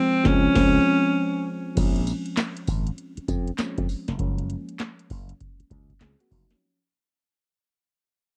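A home cassette recording with digital ambience carries this upbeat, flirty R&B and new jack swing cut at 99 BPM with a swung 16th feel, where a clear alto saxophone with pop-style vibrato states a brief solo line over a dark, decaying FM electric piano with a noise layer, a growly, punchy slap bass through an envelope filter, and a booming, dry analog drum machine with deep kick, tonal snare and metallic hats, joined from 2.4 s by barely audible crisp group handclaps as an opening band accent gives way at 1.8 s to a fade-out over Dbmaj7, Bbm7 and Gbmaj7 chords.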